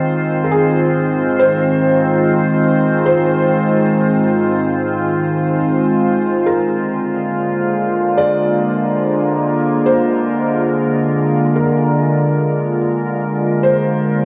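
In a straight 4/4 feel, this serene, reflective ambient passage, cut from a longer piece, rests on an up-front, morphing wavetable pad of slow-attack, chorused sustained chords, while a soft, felt-muted upright piano with audible action noise enters at 0.4 seconds to carry a mellow, intimate melody through tape echo, all of it steeped in a lush hall reverb and the worn, warbly pitch drift of old cassette tape as the harmony moves to a new chord at 6.5 seconds.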